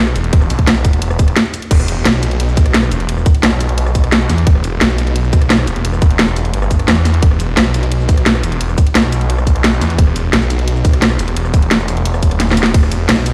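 A bare stone-room ambience on a big sound system frames this dark, futuristic and aggressive technical drum and bass cut at 174 BPM in E minor, where a snarling, detuned sawtooth bass growls from E1 to E2 with distortion, tube saturation and sidechain pumping alongside an overdriven kit of cracking snare, bright hats, ride, crash, rim click and shaker, a tight overdriven electronic kick up front, and a drum fill at 12.4 seconds.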